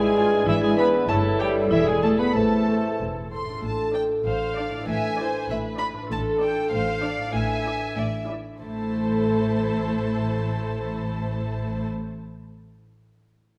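Cinematic, whimsical film cue in A minor at 96 BPM in 2/4, quirky and mischievous, where a dark-toned marimba states the opening tune with clarinet, mellow cor anglais, hollow flute, bassoon and a French horn section holding sustained chords for the first 3 seconds, while a veiled, con sordino violin section carries the melody from 0.2 s over a second muted violin line, soft-edged violas, cello and double bass sections and a ringing fingerpicked harp playing arpeggios until 12.5 s, inside a wet scoring-stage reverb.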